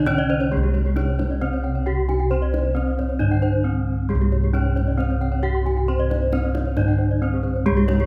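Shimmering and ceremonial, this brief Balinese gamelan passage in C pelog moves at a straight 134 BPM in 4/4, its bronze metallophones tuned in pairs so their ringing tones beat and shimmer. An up-front, horn-mallet melody metallophone with a boxy, tape-echoed sound carries the tune over a very quiet wooden-mallet accompaniment, while two bright metallophones spin arpeggios higher up. Round, beating bossed gongs anchor the bass, and a tight, soft-handed kendang sits in the background, all in a moderate recital-hall reverb.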